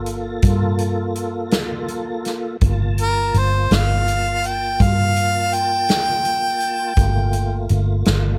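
This is a slow blues in G minor, moving at 55 BPM in a 12/8 metre with a soulful, brooding mood, and it is cut from a longer piece. A tonewheel organ holds sustained chords on a Gm7 throughout, its full, lightly overdriven tone turned by a slow rotary speaker and chorus vibrato and sitting lower in the balance than the other parts. Beneath it, a vintage fingered electric bass plays up front with a dark, round, foam-muted sound, while a swinging big-band acoustic drum kit with a punchy kick, medium-tuned snare and hi-hat keeps a straight feel in a large natural room. At 3.0 seconds a close-miked harmonica enters as the solo melody, clear and jazz-styled, with light vibrato and scooped notes. The recording is dry, with little reverb, keeping the harmonica, bass and drums close and present.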